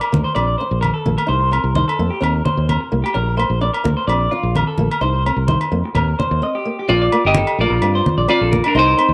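A moderate spring reverb gives this carefree, joyful highlife guitar band fragment a springy, roomy glow, cut from a longer piece and moving at 129 BPM in a straight 4/4 in Bb major. A dark, boxy old ladder-braced acoustic guitar fingerpicks the accompaniment low in the mix, while a clean, compressed electric guitar spins picked arpeggios up front, its slapback echo adding a quick doubled edge. A round, dark fingered electric bass sits forward and direct, joined by ringing agogo bells and low-tuned, thick-skinned congas that sound as if played in a small room. The chords cycle through Bb, Cm and Eb. After a brief break at 6.4 seconds, a hollow-bodied semi-hollow electric guitar takes the picked melody at 6.9 seconds, the loudest and most forward voice in the closing stretch.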